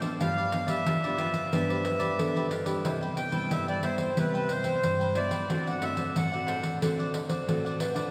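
A playful, lively samba and choro passage at 91 BPM in C major, cut from a longer piece, opens with crisp picked cavaquinho, fingerpicked nylon-string guitar with a deep classical body, and a jingly, compressed, saturated pandeiro up front. A reedy, close-miked accordion with slow beating and a full tone carries the melody from 0.2 seconds, and a buzzing, woody kalimba with a hollow-box ring adds a bright second line from 1.5 seconds over G7, Cmaj7 and D7 chords. The recording sits in a church or concert hall with a long, wet cathedral reverb.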